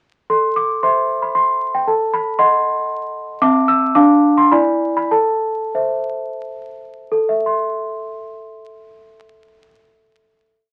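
In a gentle three-beat waltz lilt, this short classical lullaby features a worn celesta playing alone, its single-line melody floating over a waltz bass in an eerie, fragile mood. The bell-like tone, struck with soft felt hammers and slightly out of tune, sits close and up front, while the harmony drifts from minor through a diminished shade before settling home. The playing slows from 2.6 to 7.1 seconds into a final chord that rings to the end, all heard through a wet club reverb and the crackle of a very old 78 rpm record.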